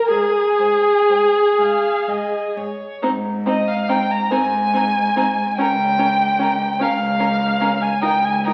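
A viola, smooth and up front, and a distant second violin open this tender fragment of a slow, romantic string quartet movement in Ab major, with the lead violin and cello joining at 0.1 s in a rubato 6/8 lilt of roughly 40-51 beats per minute. Over the cello's focused low bass, the bowed violin melody sings with rich vibrato. The harmony settles onto Ab at 3.0 s as a new passage begins, all heard through the reverb of a recital hall and the crackle of a very old 78 rpm record.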